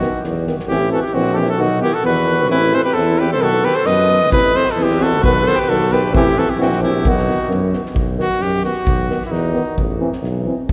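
Balkan brass band folk in a restless, virtuosic mood, cut from a longer piece and set in a church or concert hall with a long, wet cathedral reverb. An up-front cornet with a soft attack and smooth top carries the melody over a punchy alto saxophone second line with vibrato, a background euphonium, a distant, very quiet mellow trombone and a warm, roomy tuba bass. A soft-mallet drum kit with a fat snare and boomy kick sounds briefly at the start and returns at 4.3 seconds, the saxophone drops out at 7.5 seconds, and the cornet takes a solo from 8.0 seconds as the chords move between B and A minor.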